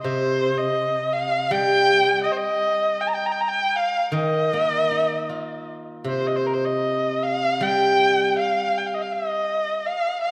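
A single dark erhu carries the melody up front, its bowed line full of expressive vibrato and portamento yet sounding slightly distant, in this wistful, graceful excerpt of Chinese traditional chamber music played with a free, rubato feel. Beneath it a steel-string zither, plucked with fingerpicks, supplies a silvery, ringing accompaniment in its lower register before falling away at 9.9 seconds, leaving the erhu to close at 10.3 seconds. A wet concert hall reverb with a long tail surrounds both instruments.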